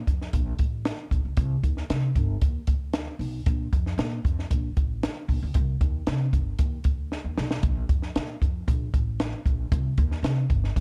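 Danceable and warm, this uptempo 1960s-style soul excerpt in Bb major moves at 115 BPM in a straight 4/4, with a woody, thumpy pizzicato upright bass and a compact cocktail drum kit of hi-hat, punchy kick and high-tuned snare both sitting up front from 0.1 seconds in a dark, dry production, the smooth small-room drums adding a brief fill at 7.1 seconds.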